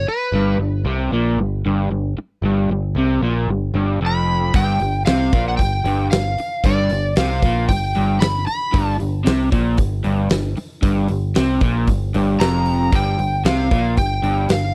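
A dry, close recording with a 1970s studio feel frames this swaggering, gritty stretch of blues rock and southern rock, cut from a longer piece. A crunchy, double-tracked overdriven guitar riff and a picked electric bass sit up front from the opening moments, and a huge arena drum kit with a fat snare and punchy kick enters at 4.5 seconds. Above them an overdriven slide guitar sings short melodic phrases, returning at 4.1 and 12.4 seconds.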